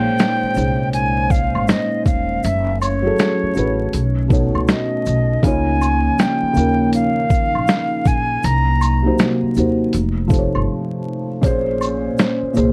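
Swung sixteenths in 4/4 set a nostalgic, reflective lo-fi hip hop groove, where a gritty, up-front sampler-style drum kit and a tube shaker and woodblock underpin a woody pizzicato upright bass, a mellow felt-muted upright piano with audible action noise and cassette tape colour, a detuned analog pad with chorus in the background, and an airy silver concert flute with vibrato that carries the melody until 9.2 s, before a brief break at 10.7 s, in a dark mix dusted with vinyl crackle.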